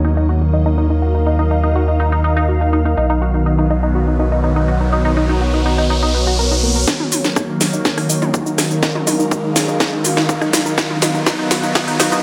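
A straight 4/4 pulse carries this driving, dramatic melodic techno fragment, where a round, deep analog bass, a tight sequenced synth arpeggio with delay and a lush, thick unison pad with phaser pump against the sidechain, an ethereal airy pad floats in ensemble chorus, filter sweeps shape the arpeggio and pad, a riser enters at 4.1 s, and at 6.9 s a build-up arrives with a punchy electronic kick and an up-front house kit of cracking snare, metallic hats, rim click, shaker and toms in gated reverb that plays a fill, all set in a bright 1980s-style digital hall with a faint mains hum.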